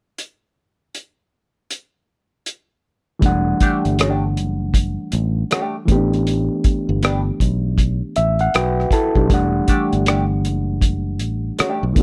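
R&B and neo-soul excerpt at 79 BPM in E minor with a swung, late-night, sultry feel, where a dry, thuddy cloth-damped drum kit of hi-hat, tight kick and rim click plays alone until 3.2 seconds, when a gritty, overdriven reed electric piano through a combo amp and a round, fingered electric bass enter over Em11 and A9sus4 chords, joined by a clean, hollow-body jazz guitar with wah as a second line, the piano adding a fill around 7.8 seconds in a close, up-front mix with little reverb.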